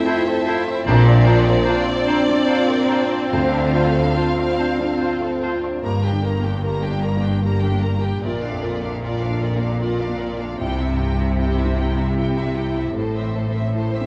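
A soft, intimate felt-muted upright piano with audible action noise anchors this moving, uplifting cinematic film-score excerpt in a rubato 3/4. Lush studio violins carry the vibrato-rich melody over a gentler background violin line and smooth violas, while bowed cellos and double basses join on the bass at 0.9 s. A dark, distant French horn section, a bright oboe, a very quiet clarinet and a hollow, pure flute group colour the opening until about 5.5 s, all bathed in a wet scoring-stage reverb and the warbling pitch drift of worn old cassette tape.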